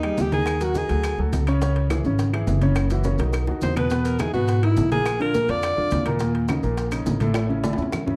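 Afro-Cuban jazz at a fiery, driving 209 BPM in 4/4, cut from a longer piece: a clear alto saxophone sings up front with vibrato, subtone and scooped notes, phrasing briefly at the start and returning from 3.6 to 6.1 seconds, over a concert grand piano with deep bass and a growly, woody pizzicato upright bass. Behind them sit bright, damped low-tuned congas, tight high-tuned bongos, ringing metal-shell timbales, dry claves and grainy maracas, with drum fills at 3.1 and 7.4 seconds. A moderate studio reverb wraps the whole in a dark production.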